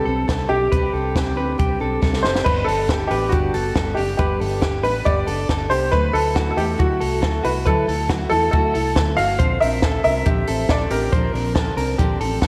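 A dreamy, reverb-soaked mix with a cassette-tape haze frames this bright, nostalgic slice of jangly indie pop at 138 BPM, where a brilliant, woody upright piano, slightly detuned and up front, carries the melody through a diffuse ambient delay until it stops at 11.3 seconds. Underneath, a full-bodied steel-string acoustic guitar with fresh strings and audible finger squeak picks the accompaniment through a lush chorus, while a clean, direct-recorded electric guitar adds compressed arpeggios in the same delay and a foam-muted vintage bass holds a round, dark low end. A compact cocktail kit with a punchy kick, high-tuned snare and dark cymbals enters at 0.3 seconds, and its fill from 2.0 to 2.5 seconds leads into the second section over chords moving from Csus2 to Dadd9 and Bbadd9.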